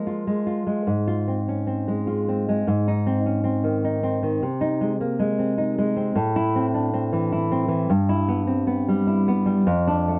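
A lone nylon-string guitar opens on an F minor chord and carries this passionate, wistful romantic piece on its own for the full 10.2 seconds, moving in a rubato 3/4 around 102 BPM through A-flat, then A minor, E minor and D minor. The thumb-plucked tone is dark and full-bodied, set up front with audible finger squeak, and ranges from F2 to F4. Light reverb and a dusky, warm production frame this fragment cut from a longer work.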